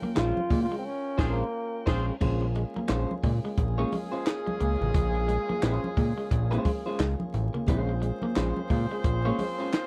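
A cool, sly funk excerpt at 88 BPM in Bb dorian, with a swung 16th feel, opens on a lightly overdriven tonewheel organ holding sustained chords in the background, an electric guitar riff at the edge of break-up bathed in lush chorus, and bright, thin-skinned congas. A clear, vintage trombone with slapback echo takes a brief jazz-style solo from 0.2 s to 1.9 s over band accents, while a fat, saturated analog bass and a punchy cocktail drum kit with a high-tuned snare, dark cymbals and handclaps sit up front, and a second slightly broken-up guitar plays accompaniment in the background. From 1.2 s a tight horn section with octave doubling and a smooth top carries a second line to the end of this dry, close 1970s-style recording dusted with vinyl crackle.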